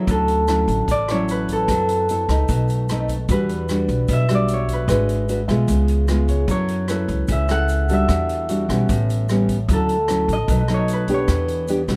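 Bossa nova at 150 BPM in D major, relaxed and sophisticated, cut from a longer piece and built on jazzy chords such as Dmaj9, B7b9 and Em9. A ringing, thumb-plucked concert harp carries the melody up front over a full-bodied nylon-string guitar, a woody, thumpy pizzicato upright bass and a natural drum kit with a punchy kick, hi-hat and rim click, while a grainy tube shaker sits in the background. A clear, intimate grand piano with audible action noise adds background accompaniment at the opening and again from 5.5 to 11.3 seconds, all set in light reverb and a dark, warm production.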